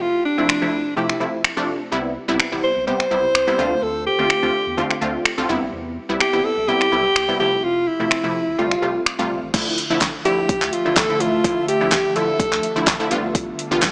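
A breathy alto saxophone carries the melody up front in this carefree, euphoric dance-pop excerpt at 126 BPM, its vibrato-laden pop phrasing trailed by dub echo until it drops out at 13.1 seconds. Beneath it, a bright, detuned sawtooth pluck in unison plays the accompaniment from the start, punchy and decaying with a filter sweep, phaser and sidechain pumping. A layered electronic deep house kit arrives at 0.5 seconds with a deep kick, fat snare, metallic hats, finger snaps, handclaps and crash cymbal, though the kick falls silent briefly before the second section. A round sine sub bass sits in the background under pumping sidechain, while an ethereal, airy pad with ensemble chorus and built-in reverb enters at 9.9 seconds to hold mellow sustained chords. The harmony moves through Fmaj7, Cmaj7 and Dm7 to G9sus4, settles on Dmadd9 and closes on G7, all heard in light reverb with a small-speaker character.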